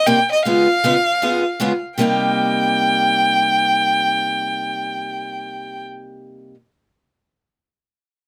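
Swung eighths at 157 BPM in 4/4 carry this bittersweet, virtuosic C minor jazz fragment, where an up-front bowed violin sings a rich, expressive melody with vibrato, portamento and soft attacks between Eb5 and G5, while a bright, boxy picked steel-string parlour guitar accompanies over Db7 then Cm7 at 2.0 seconds, outlasting the violin to close alone at 6.6 seconds in a close, detailed recording with light reverb.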